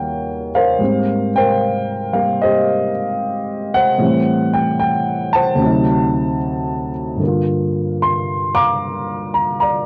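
A dark, mellow baby grand piano plays alone from the very start, sitting up front in a booth with moderate ambience, its action noise audible and a vintage cassette-tape character coloring its long sustain. This sophisticated, playful solo jazz fragment swings at 75 BPM in 4/4, ranging from D2 to D6 as it moves through Eb7, Abmaj9, Am7, D7b9 and Gm7 with a smooth, intimate touch. Tuned slightly sharp to A4 = 445 Hz, it has the feel of a home recording cut from a longer piece, ending at 9.9 seconds.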